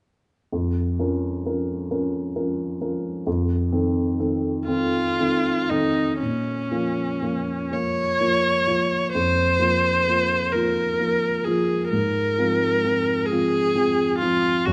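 A rubato 12/8 pulse at roughly 38-45 BPM, counted in dotted quarters, carries this elegiac, yearning romantic classical excerpt in Bb minor: a dark, mellow grand piano opens alone at 0.5 s with up-front accompaniment before a single rich, focused viola enters at 4.7 s with a bowed, vibrato melody, both parts sounding until 14.7 s in a moderate scoring-stage reverb as the harmony moves from Bbm/F and F7 to Bbm and Fm/Ab.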